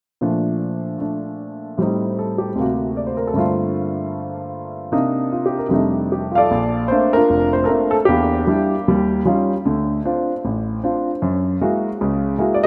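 An intimate concert grand piano, up front with deep bass and audible action noise, plays sophisticated, playful solo jazz in Bb major at 153 BPM with a swung 4/4 feel, moving through chords from Bbmaj7 to Gb9 as a second section begins at 6.5 seconds, set in a lush hall reverb within a rough home demo mix cut from a longer piece.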